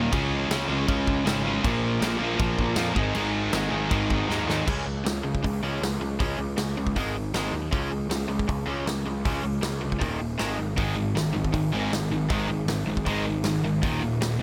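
A sludgy, overdriven guitar sits up front with a heavy riff, playing through the opening passage, dropping out at 4.7 seconds and returning at 10.8 seconds. Beside it, a second electric guitar, bright, compressed and picked, drives its own overdriven riff from start to finish. A growly fuzz bass, picked and overdriven, anchors the low end throughout. A big, natural-sounding acoustic drum kit, with a punchy kick, a medium-tuned snare, hi-hat and crash, keeps a straight 4/4 and throws in a fill at 4.3 seconds just before the second section begins. The rowdy, energetic punk rock excerpt moves through power chords on Db, Bb, Ab and Eb, with a dry, close sound that carries little reverb.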